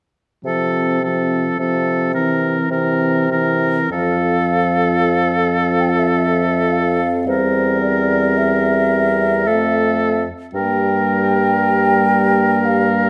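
In an unhurried triple metre with flexible, rubato beats, this serene, lyrical excerpt from a slow romantic movement for wind quintet opens on a gentle bed of mellow French horn, a punchy bassoon bass with light vibrato, a dark, distant clarinet and a clear, up-front oboe singing a second line with vibrato, until an airy, hollow concert flute takes the tongued, vibrato-tinged melody at 3.9 s, all carried by a moderate stage reverb.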